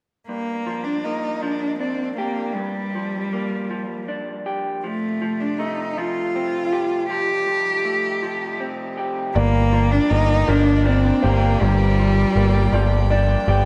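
This melancholic, cathartic rock piece moves slowly in 6/8 at 53 BPM, counted in dotted quarters, in G minor. A bowed solo cello carries the melody up front with a biting, vibrato-laden tone, while an electric guitar through a small old amp picks dark, slightly broken-up, lo-fi arpeggios beneath it. Both share slapback echo and digital delay. At 4.8 seconds an earthy chamber string section enters with smooth-topped sustained chords as the harmony shifts from Gm7 to Fadd9. At 9.4 seconds a new section begins: a direct, up-front picked electric bass anchors a low G, and a soft, felt-muted upright piano adds intimate, mellow arpeggios with digital delay in the background. A lush hall reverb gives the excerpt a big arena sound.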